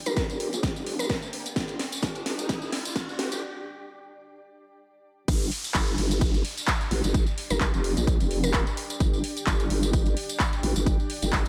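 A blurred, evolving granular cloud pad and an electronic riser open this gritty, swaggering bass house excerpt in G minor at 129 BPM, with a lightly swung 16th-note feel. Almost at once the vowel-sweep wobble bass arrives up front, nasal and resonant with overdrive, chorus and sidechain pumping, alongside an overdriven house kit with a cracking snare, handclaps, hi-hat and crash, a punchy electronic kick and a jingly, vintage tambourine. A woody, round mallet-like synth pluck with chorus and tape echo sounds briefly at the start and returns at 7.5 seconds. The opening build-up carries a drum fill and filter sweep, pauses for a short break at 3.4 seconds, and then drops at 5.3 seconds into the main groove. The pad stays in the background, bright and pumping beneath a light digital ambience.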